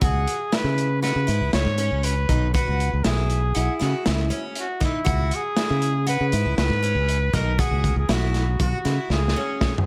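Progressive instrumental band music in 5/4 with a brooding, tense mood, cut from a longer piece, where a vibrato-laden, punchy trumpet carries the melody through tape echo over shimmering, octave-doubled arpeggios from a picked twelve-string acoustic guitar. A bright, direct fingered electric bass sits up front beside a crunchy, saturated breakbeat kit whose muffled, rolled-off sound and gritty lo-fi character frame a tight kick and medium-tuned snare. A smooth, subtoned alto saxophone slips in briefly with scooped notes and echo from 3.6 to 4.4 seconds, and a drum fill closes the passage at 9.1 seconds.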